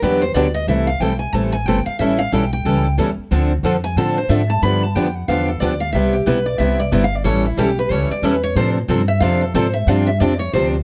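A bright, up-front steel-string concert guitar takes the lead in this playful, charming excerpt of swinging jazz manouche, backed by a boxy parlour guitar and a fresh-stringed concert guitar set further back, both picking changes that circle through C6, A7, Dm7 and G7 before landing on G7sus4, while a woody, thumpy gut-string upright bass plucks a dark, close line, all in a detailed, close-miked room with moderate studio reverb.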